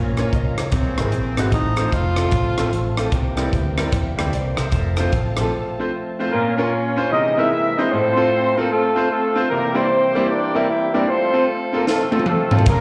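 A swung 4/4 groove at 151 BPM drives this solemn, soulful uptempo gospel excerpt, where a gritty, punchy fusion drum kit and a round, foam-muted fingered electric bass sit up front under a brilliant grand piano with slapback echo, a thick, lightly overdriven tonewheel organ spinning through a fast rotary speaker in the background, and very quiet woody strings, while a warm, subtoned tenor saxophone carries the opening melody before a break at 5.5 s hands the tune at 6.3 s to a tight, octave-doubled horn section with a smooth top, all heard through a live venue's PA in a recital-hall reverb until a drum fill returns at 11.9 s.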